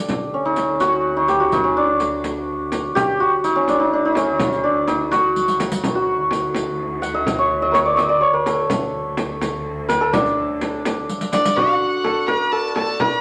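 A shimmering, ringing santur carries the melody up front in this passionate Persian modal piece in D chahargah, moving at 84 BPM in a straight 6/8 over a lush, bowed cello-section drone on D2, a small, bright frame drum with fills at 5.4 and 11.1 seconds, and the close, dry jingles of a riq, until a single airy, nasal violin with light vibrato adds an intense second line from 11.3 seconds, the whole ensemble sitting in a wet studio reverb in this section cut from a longer work.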